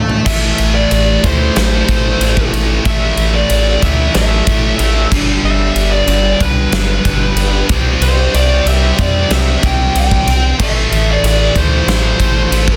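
Menacing and aggressive, this hard rock excerpt drives at 93 BPM in A minor, with a drum fill at the start launching a big acoustic kit, fat snare, punchy kick and bright stone-room ambience, alongside a dark, metallic FM bass that sits up front with a fast, decaying attack. Behind them, three picked electric guitars play riffs: a bright high-gain distorted one, a hollow-body overdriven one, and a very quiet, scooped, double-tracked high-gain layer. From 0.3 seconds, a smooth, dark overdriven lead guitar carries the melody over a progression of Am, G, C5 and back to Am, all within a dense, heavily limited modern master with light reverb.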